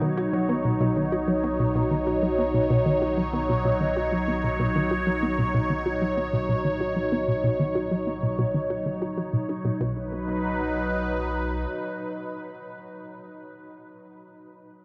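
A steady, straight four-beat pulse carries this short cut from a longer piece of ambient, sequencer-driven space music, with an expansive, cosmic mood. A squelchy, resonant blip pluck plays a bright riff built from detuned square, sawtooth and triangle tones, treated with chorus and analog delay; a filter sweep runs across it through the first 9.8 seconds, and the pluck stops at 10.1 seconds. Up front, a swirling, airy pad of detuned sawtooth with a noise layer holds slow-blooming chords, colored by phaser and chorus, and lasts longest, to 13.1 seconds. Underneath, a round, deep analog bass of triangle and sine tones sits low and subdued on a B and fades out across the opening stretch. A huge, wet reverb with a long tail surrounds the music, which moves into a brief second section near 9.8 seconds.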